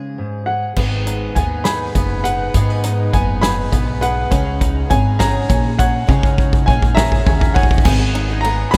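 A dark, full-bodied fingerpicked steel-string guitar opens this hopeful, anthemic indie folk excerpt in a straight 6/8 at 68 BPM, soon joined at 0.5 seconds by a clear, short-sustained upright piano carrying the melody through a delay. From 0.8 seconds the arrangement builds with a shimmering, octave-doubled twelve-string guitar under lush chorus, a twangy banjo playing arpeggios with fingerpicks, a thumpy pizzicato upright bass, and an up-front country drum kit with a punchy kick that plays a fill across the whole build. At 4.3 seconds the fingerpicked guitar drops out as a soft, felt-muted upright piano slips in very quietly beneath the others, all set in light reverb over chords moving from G#m to C#sus2 and back.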